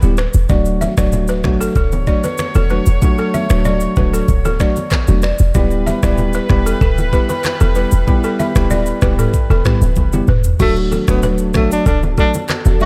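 A straight 4/4 afrobeats groove at 95 BPM rides a knocking, up-front electronic kit with snaps, handclaps, rim clicks, shaker and toms, a punchy, tight 808-style bass, and low-tuned, ringing congas in the background. Meanwhile a woody, buzzing balafon riff with digital delay, bell-like tine electric piano chords and a clear, punchy horn section in D major set a joyful, sunny mood. After a drum fill at 10.0 seconds, a smooth jazz-style tenor saxophone solo with light vibrato enters at 10.6 seconds, and an ethereal, airy pad with chorus and phaser drifts in at 11.5 seconds, all within a dark, warm mix touched by light reverb.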